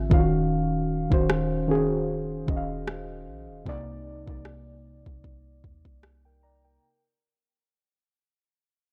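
A slow 76 BPM groove in 4/4 with a light 16th-note swing drives this short, late-night contemporary R&B excerpt, carried by a smooth electronic drum kit whose soft kick and rim click sit up front from 0.1 to 6.2 seconds. Beneath it, a clean 808-style bass rumbles between Eb1 and Eb2, deep and boomy with a sine-like tone, fast attack and dark decay, sitting low in the balance. The muted, felt-like synth keys carry the accompaniment across the whole passage, blending triangle and sawtooth tones with a noise layer and a filter sweep, their intimate, dusky sound thickened by chorus and placed close to the listener. The harmony moves from Ebm9 to Cm9 at 3.7 seconds, keeping the mood dark and moody. The sound is dry and gritty with little reverb, and the whole fragment fades out over its brief length.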